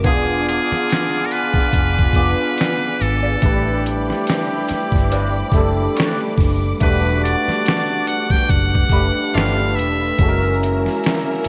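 R&B and neo-soul at 71 BPM in E minor, this late-night, sultry excerpt rides a gritty, pitched-down boom bap sampler kit with a thumpy kick and a round, foam-muted electric bass beneath an overdriven tine electric piano with analog chorus, lush background strings holding sustained chords, punchy trombone stabs with digital delay, and an up-front, buzzy metal-muted trumpet melody, while a slightly broken-up electric guitar with wah and chorus adds a second line from 2.2 to 9.5 seconds over chords moving from E7b9 through Am11 and Em9 to G9 and F#7, all in a bright 1980s-style digital production with light room reverb.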